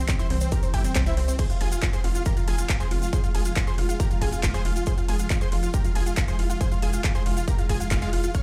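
Emotional and euphoric, this brief excerpt of uplifting trance moves at 138 BPM in a straight 4/4, centred on F harmonic minor as the harmony shifts from C to F minor at 1.4 seconds. A huge, detuned supersaw lead carries the melody between Ab3 and F5, its bright, airy sawtooth body pumping against the sidechain and trailing delay, while a lush unison pluck traces a second line higher up, from C5 to F6, sitting in the background with its own delay and filter sweep. Beneath them a shimmering, ethereal pad holds sustained chords from C3 to Ab4, dark and granular with an octave-up shimmer, coloured by chorus, phaser and its built-in reverb. A tight, driving sequencer bass between F1 and C2 pumps under everything else, and from 0.1 seconds an up-front, layered kick drives the beat alongside an overdriven analog drum machine supplying crash and ride cymbals, handclaps and hi-hat, plus a grainy, close egg shaker tucked behind. 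The mix itself is dry, but it sounds as if played on a big sound system in a bare room, with a large studio reverb around it.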